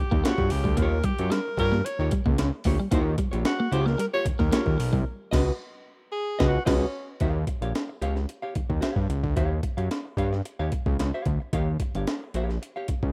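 Gritty and playful, this short funk passage, cut from a longer piece, rides a straight 4/4 groove over Eb9 and Db9sus4 chords. A breathy tenor saxophone carries the solo melody with vibrato, scooped notes and a smooth top in a jazz style until 7.2 seconds. Beneath it, a fat, saturated analog bass with a detuned sawtooth tone and a filter sweep sits up front beside a compressed, sampler-style breakbeat kit built on a thumpy kick and a high-tuned snare. A dark, picked hollow-body jazz guitar comps throughout, while a clean electric guitar with subtle chorus plays a scooped, compressed riff that drops out at 5.0 seconds, just before a band accent arrives at 5.1 seconds. The sound is dry, in the manner of a rough home demo mix.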